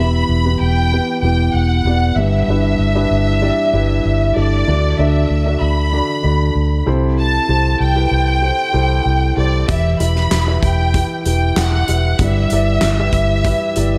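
Piano-driven pop in E minor at 96 BPM, bittersweet yet driving, where a lush violin section carries the melody through diffuse ambient delay over a dark, woody upright piano and a round, foam-muted electric bass that sits up front, before a loose indie drum kit with a fat snare, tight kick, hi-hat and handclaps enters at 9.7 seconds, all within a dreamy mix soaked in church reverb, moving through Em, G6, D and Am7/C in this short section cut from a longer piece.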